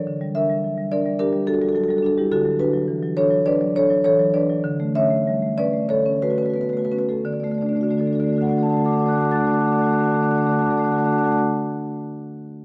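Contemporary classical for solo marimba, this brief, flowing fragment cut from a longer piece features a mellow, round marimba struck with soft mallets and placed up front, ranging from D3 to A6 in a rubato 4/4 that slows from 1.2 to 7.3 seconds, moving through chords such as Gm6/D and Bm9/D before resting on D as a contrasting section begins at 7.3 seconds, all bathed in the lingering wash of a concert hall.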